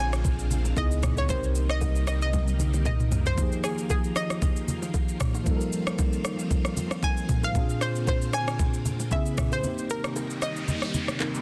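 A swung 115 BPM amapiano groove in F minor rides a knocking, tape-warm R&B drum kit with handclaps, rim clicks, shaker and toms, and a fill at 2.3 seconds, under a deep, soulful blend of a round, chorused and tape-echoed analog pluck melody, a mellow tine electric piano, shimmering vintage string-machine violins with sidechain pumping, soft-handed congas and bongos in the background, and a full sine-and-triangle sub bass with octave that drops out at 3.3 seconds, before the kick mutes at 9.6 seconds and an electronic noise sweep enters at 10.1 seconds in this dense, heavily limited excerpt.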